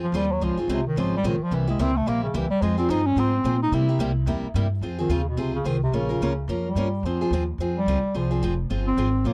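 A dry, close 1970s-style studio sound frames this fiery, virtuosic slice of acoustic string swing in F minor, racing along at 217 BPM with a swung 4/4 feel. A bass clarinet with a smooth top, vibrato and scooped notes carries a jazz-style solo up front, its tone touched by tape echo, while a picked steel-string acoustic guitar with old, woody-sounding strings supplies the accompaniment. Underneath, a thumpy pizzicato upright bass on gut strings anchors the harmony across the full 9.3 seconds, moving through chords such as Dbmaj7, C7b9 and Bbm.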